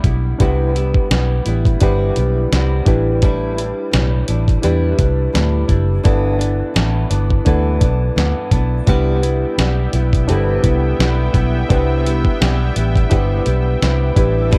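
Indie pop with a bedroom pop haze, this dreamy, laid-back piece moves at 85 BPM in 4/4 with a lightly swung sixteenth-note feel, cycling through Cmaj7, A7sus4, G6 and back to Cmaj7. A dusty, gritty sampler-style drum kit sits up front, compressed, with a thumpy kick, fat snare and hi-hat. Beside it, a dark, round, foam-muted electric bass sounds amped and punchy. A boxy fingerpicked flamenco guitar, complete with finger squeak, carries subtle chorus, a warbly pitch drift and dub echo, while a reedy, worn electric piano, slightly out of tune and heard through its built-in speakers, shares that dub echo. At 9.3 seconds a lush, thick, bright sawtooth unison pad with a slow attack and chorus enters, holding sustained chords until 14.6 seconds, and moderate spring reverb with digital ambience gives the echo-heavy mix a hazy sense of space.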